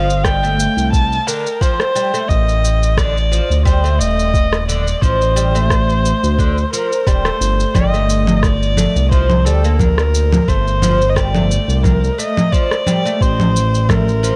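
Light reverb, digital ambience and tape saturation frame this meditative, mystical organic downtempo excerpt at 88 BPM with a gentle 16th-note swing, where a bowed kamancheh sings the melody with vibrato and portamento through vintage 12-bit sampler grit and digital delay, a woody, plectrum-plucked oud plays arpeggios through tape echo, a smooth, nasal synth bass sits up front, and a soft electronic kick joins electronic shaker, rim click and congas re-recorded in a small room, over chords moving from Am7b5 at 2.3 seconds to Gm and Am.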